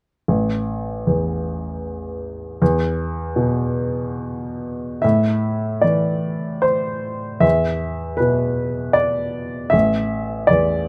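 A solo baby grand piano enters at 0.3 s with a romantic classical nocturne in A minor, moving in 3/4 at about 76 BPM with uneven, rubato beats and a mournful, wistful mood. The worn, intimate instrument sits up front, its short sustain and audible action noise caught by close, detailed microphones under light reverb, with a natural, warm tone spanning A1 to E5. The harmony moves through A5, E5 and A minor, with a new section beginning at 5.0 s, and the passage is cut from a longer piece, ending at 10.9 s.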